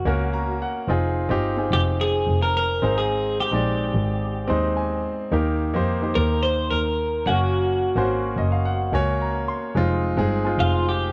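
This hopeful, uplifting pop excerpt moves at 108 BPM in a straight 4/4, with all three parts up front in a lightly reverberant space over chords of Gb, Fm7, Ab and Eb. A bright, twangy twelve-string electric guitar carries the picked melody with a clean, compressed tone and a touch of spring reverb. A clear, polished baby grand piano supplies the accompaniment and adds fills at 0.1, 4.2 and 8.1 seconds, while a single bowed double bass anchors the bass with a soft attack and a pure, floating warmth.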